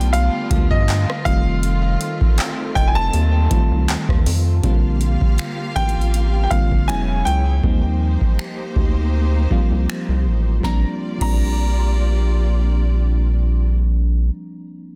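Contemporary R&B at 80 BPM in Bb major with a gentle swing on the 16ths, romantic and dreamy, this excerpt pairs a brilliant grand piano melody through digital delay with a warbling FM electric piano, lush bowed strings with vibrato, a rubbery, bouncy square-wave bass up front, a booming analog drum machine with a deep kick, a crisp soft-clipped snare, metallic hats, finger snaps and handclaps that stops at 11.4 s, and a very quiet chiming, inharmonic synth texture heard only for the first 5.0 s, all in digital ambience with a dense, heavily limited modern master.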